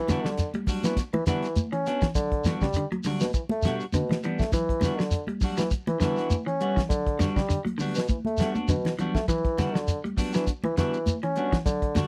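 Intense and driving, this afrobeat groove moves at 101 BPM in 4/4 with a 16th-note swing, sitting in E dorian on an Em9 chord, and it is cut from a longer piece. A mellow bassoon carries the bass line with light vibrato and a classical touch, placed up front and playing solo in character. A semi-hollow electric guitar picks clean, hollow-bodied arpeggios, while a second clean electric guitar adds picked stabs coated in lush chorus. The damped 70s drum kit is dry and prominent, with a fat snare, tight kick and hi-hat, and it plays a fill from 8.1 to 9.3 seconds. Grainy shekere sits close, and high-tuned congas with a thick skin and soft hands murmur in the background, all captured in a dry, close 1970s-style studio sound.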